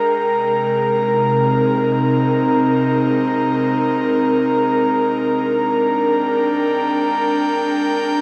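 Serene and peaceful, this ambient excerpt drifts in free time, with an airy, breathy pad up front holding soft, detuned sustained chords from Cm7 at 0.1 seconds to Gm at 5.3 seconds, thickened by chorus and shimmer reverb. Behind it, a tense, string-like bowed drone with ring modulation and vibrato sits in the background and fades out over the full 8.2 seconds, while a glass harmonica adds a pure, ethereal Bb5 texture through its own shimmer reverb. A cathedral reverb with a 6.7-second decay bathes the whole piece in a vast, wet space.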